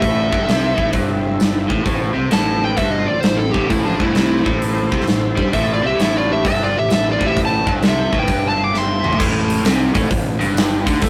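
Blues rock and southern rock power-trio excerpt in A minor at 131 BPM with a swung, smoky and gritty feel, where a fuzz lead guitar carries the melody through distortion and analog delay over a dark, smooth overdriven second guitar line in the background, a very quiet tonewheel organ holding thick sustained chords with key click and slow rotary speaker, a double-tracked overdriven guitar riff, a growly fuzz fingered bass, and a huge, up-front arena drum kit with punchy kick and bright cymbals whose fill at 8.7 seconds hands off at 9.2 seconds to riff, bass and drums alone until 11.1 seconds, all captured in a rough rehearsal-room recording with saturation.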